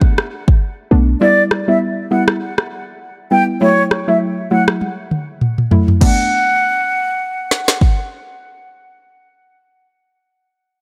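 A swung 16th-note dancehall groove at 100 BPM in B minor drives this hypnotic, bouncy excerpt, its electronic afro-pop kit of deep kick, woody snare, rim click, toms and crash cymbal leading into a drum fill at 4.8 seconds, while a dark, round pluck with chorus and a single punchy 808-style bass note at 0.9 seconds support an airy, mellow concert flute melody with delay, all set in light reverb.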